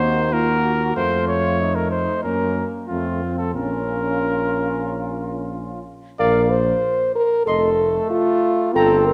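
Noble and triumphant, this 9-second cut from a longer classical brass quintet piece in B-flat minor moves with a rubato feel around 94 BPM, as an up-front, soft-attacked trumpet with light vibrato carries the melody over a distant flugelhorn second line, a smooth-topped French horn, a roomy trombone in the background, and a close-miked tuba bass, all set in a wet concert hall reverb.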